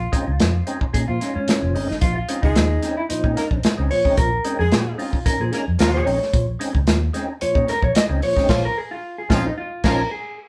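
Funk with a cool, straight groove, this short cut features a clean, dark, fingered electric guitar solo up front over a tight-kicked soul drum kit with a rolled-off top, a round, foam-muted vintage bass, and fat, percussive tonewheel organ stabs with key click, light overdrive, chorus vibrato and a slow rotary speaker, while a punchy, clear horn section with light vibrato joins at 2.4 seconds and the band hits an accent from 8.5 seconds, all captured as a live band in one room with moderate studio reverb.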